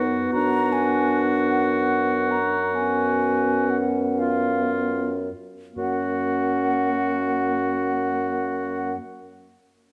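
In a rubato 6/8 that slows through its first 5.8 seconds, this lyrical, tender passage from a slow romantic movement for wind quintet sets an airy, hollow silver flute melody with vibrato above a smooth-topped oboe second line up front, a mellow French horn and a background clarinet in accompaniment, and a forward bassoon with light vibrato holding the bass, passing from Bm/F# through C#7/F# to an F# chord at 5.8 seconds in a wet recital-hall reverb and a dark production.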